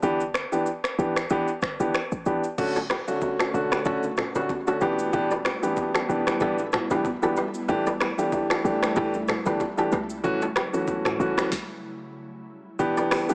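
A smooth, sultry afrobeats groove opens with an up-front grand piano, a short, punchy 808-style bass and an electronic afro-pop drum kit with a knocking kick, sharp snare and metallic hats heard in a large room, all playing through a brief break. At 2.6 seconds congas and bongos slip in very quietly with a live-room feel, and a fingerpicked kora enters just after, its crisp, ringing riff set in the background and trailed by digital delay. From 3.0 seconds an ethereal, airy pad adds mellow sustained chords behind the others, softened by ensemble chorus and reverb. Finger snaps, rim clicks, shaker, toms and crash cymbal fill out the kit over a lightly swung 4/4 feel as the chords move from Dmaj7 through Em7, A7sus4 and F#m7. The band stops briefly near the end before Em7 returns with the kick muted, and the whole has a light reverb and a small-speaker sound, cut from a longer piece.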